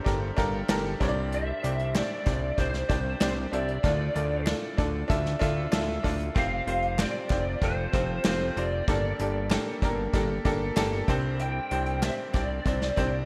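Warm and hopeful, this piano-driven pop excerpt moves at 95 BPM in a straight 4/4, cut from a longer piece. A bright, woody upright piano with a worn, slightly detuned character opens with a short fill in the first second or so, then carries the accompaniment through chords such as Gmadd9, Csus2, Dm and Fsus2. Beneath it sits a fat, thick analog bass with a detuned sawtooth tone, fast attack and filter sweep, held up front alongside a smooth, dark brush drum kit whose tight kick, medium-tuned snare and hi-hat are treated with gated reverb. A very quiet, crisp group handclap adds a human touch from 0.7 seconds, and at 1.3 seconds a lo-fi electric lead guitar through a small cranked amp enters with a picked, overdriven melody coloured by ensemble chorus. The whole is framed by light reverb and small room ambience in a bright 1980s-style digital production.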